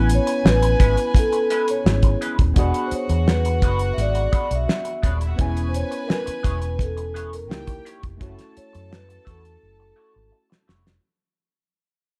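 Dark, reverb-soaked production frames this smooth, lush 1970s-style soul fragment, fading throughout as a mellow soft-mallet vibraphone carries the melody over a thuddy, cloth-damped drum kit with a fat snare and a round, foam-muted fingered bass up front, while a worn, slightly out-of-tune electric piano with subtle chorus, a slightly broken-up, lo-fi electric guitar riff with wah and lush chorus, and a floating sul tasto violin section fill out the harmony moving from Amaj9 through E9, E6 and C#dim7 to A6 before a drum fill at 9.6 s.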